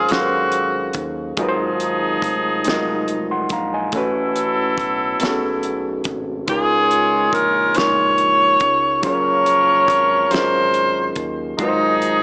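Tender and warm, this slow six-eight R&B piece sets a gritty, barky overdriven reed electric piano up front over clear, soft-attack stabs from a vintage-style horn section, a round, deep analog bass sitting in the background and a cloth-damped, thuddy drum kit with a fat snare and tight kick, while a distant, roomy tenor saxophone with light vibrato sounds briefly at the start and returns at 6.5 seconds, the whole mix carrying light reverb, a small-room ambience and a small-speaker sound.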